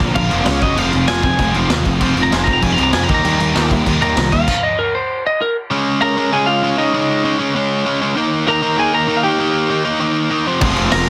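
The sound is dense and heavily limited, with little reverb and a raw, angry punk rock edge, cut from a longer piece at a driving 195 BPM in straight 4/4. An overdriven semi-hollow guitar sits up front, bright and hollow-bodied, holding its picked riff throughout. A twangy, slightly broken-up lead guitar carries the melody on top, compressed and soloing over the opening stretch. Beneath them, a growly fuzz bass, a gritty garage drum kit with a boomy kick and rolled-off top, and two very quiet distorted guitars, one double-tracked and sludgy, pound out the riff until they drop away around 4.5 seconds. The harmony moves from Fm through Eb to Db and back to Eb while the semi-hollow guitar and lead carry on alone, until the full band crashes back in at 10.6 seconds.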